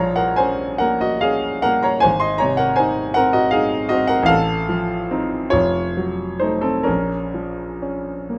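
Close, detailed microphones and a light reverb place a clear grand piano up front, its tone smooth with a vintage character and a short sustain. This is a romantic classical nocturne for solo piano in B-flat minor, tuned slightly high to A4 = 441 Hz, and its mood is melancholic and wistful. The music moves slowly in 12/8, at roughly 42 to 54 beats per minute counted in dotted quarters, with a freely breathing rubato feel. The piano covers a broad span from F1 up to C6 across this short passage, which is cut from a longer piece. Its harmony moves from B-flat minor to A-flat, then through F7 over A and an F7 with a flat ninth at 5.5 seconds, before settling back on B-flat minor at 6.9 seconds.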